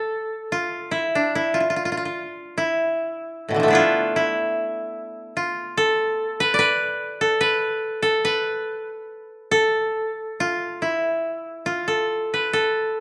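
Calm and austere, this short passage of Japanese traditional music is cut from a longer piece and unfolds in a free, rubato feel over a 4/4 frame. A solo koto carries it alone from the start to 13.0 seconds, ranging from A2 up to D5. The instrument sounds acoustic and bright, plucked with fingerpicks, with a dry, woody tone. It sits up front in the mix, close to the ear. A light reverb gives the recording a touch of space around the plucked strings.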